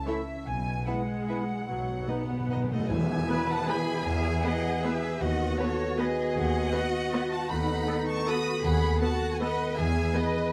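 A rich, vibrato-laden violin melody opens over ringing, thumb-plucked harp arpeggios and a brief bright flute line, with a second violin line, clear clarinet, mellow bassoon and smooth violas joining at once, and mellow French horns holding sustained chords in this sweeping, festive orchestral ballroom waltz in E major, cut from a longer piece. At 0.5 seconds the close, expressive double basses and distant cellos take up the bass, with very quiet dark cymbals and tam-tam beneath. A timpani fill on calf heads at 1.7 seconds leads to a full band accent at 2.9 seconds, where a rubato passage unfolds over E, B/D# and B7/D# before returning to E, all in a close, detailed recording with light reverb.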